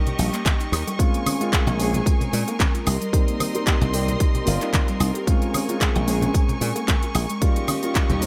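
A dry, thumbed slap bass sits up front in this groovy, sleek nu-disco excerpt, its bright, foam-muted tone landing punchy and direct from 0.2 seconds, beside a layered electronic kick that enters at 0.5 seconds. A house drum kit adds crisp hi-hats, handclaps, shaker and woodblock over a gently swung 4/4 feel, while cabasa, congas and bongos sit in the background with soft hands and a saturated, compressed character. A dark concert grand piano plays mellow, intimate accompaniment with audible action noise and tape echo, and a studio string section holds sustained bowed chords with vibrato and a touch of 12-bit sampler grit. A round, full-bodied filter pluck traces arpeggios beneath lush chorus, cassette tape colour and echo, and piano, strings and pluck all pump against the kick. The harmony moves through Eb7, Bbm7 and Cm7, then back to Bbm7 before returning to Eb7, and the close, dry mix carries little reverb.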